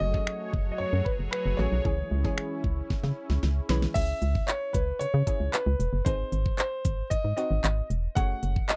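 A hollow, organ-like FM bass sits up front in this confident, bittersweet dance-pop excerpt in C# minor, its dark, percussive notes pumping against the kick at 114 BPM in a straight 4/4. Above it, a concert grand piano carries the melody in a narrow upper range, its tone warm with deep body and placed close to the listener. A round, detuned analog pluck fills in the accompaniment with a noisy sawtooth-and-square edge, a moving notch and chorus, also breathing with sidechain pumping. A bright, resonant pad built from ring-modulated sawtooth and triangle layers supplies slow-blooming sustained chords before falling away at 3.9 seconds. The layered electronic kit pairs a knocking kick and fat snare with crisp hats, handclaps, finger snaps and a crash, with a fill from 2.9 seconds leading into a new section at 4.0 seconds. The harmony moves from F#madd9 through C#m to G# and back to F#madd9, all captured in a dry, close studio sound with a 1970s flavour.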